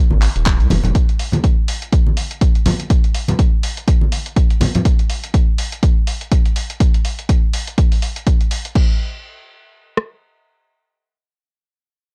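A swung 123 BPM deep house groove in 4/4 sets a moody, smooth tone, built on an up-front house kit with a punchy, tape-warm kick and rim click running to 10.1 seconds, a gritty, compressed sampler-style kit adding crash, handclaps and hi-hat with a large-room sheen, ringing hard-hand congas up front until 4.8 seconds, and a round, dark analog bass with sidechain pumping heard only from 0.1 to 0.9 seconds, all in a dry, saturated hardware mix cut from a longer piece.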